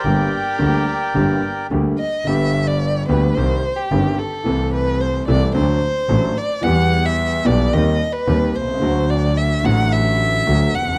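A dry, close 1970s-style studio sound with light small-room reverb frames this tense, sultry tango fragment, played with a loose rubato feel. A reedy, airy bandoneon carries the melody up front only until 1.7 seconds, while a smooth, vintage-toned concert grand piano with deep bass provides accompaniment and a focused, bowed double bass holds the low end. The violin starts as a second line and takes a solo from 2.3 seconds, its warm, expressive bowing full of vibrato and portamento with a soft attack, as the harmony moves from G minor into G major.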